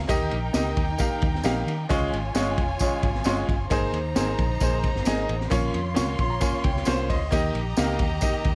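A bright, up-front concert grand piano accompanies this uplifting 1960s-style soul excerpt at 133 BPM, adding fills at 3.0 and 6.0 seconds over chords moving from Eb through Db, Abadd9 and Bbm back to Eb, backed by a gritty, saturated breakbeat drum kit with a punchy kick and high-tuned snare, a round, foam-muted vintage electric bass, a smooth bowed violin section with vibrato, and a jingly tambourine, all under light reverb.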